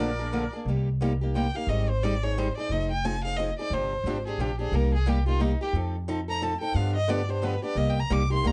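Dark, warm production with light reverb frames this short, bittersweet jazz manouche waltz in a lilting swing, cut from a longer piece. A reedy, shimmering musette accordion sounds only in the first 0.5 seconds, and from 0.7 seconds a rich, bowed violin takes a virtuosic, expressive solo with vibrato and portamento over a minor-key progression. Up front, a bright, boxy parlour steel-string guitar picks the accompaniment with audible finger squeak, while a woody, thumpy pizzicato upright bass on gut strings anchors the low end.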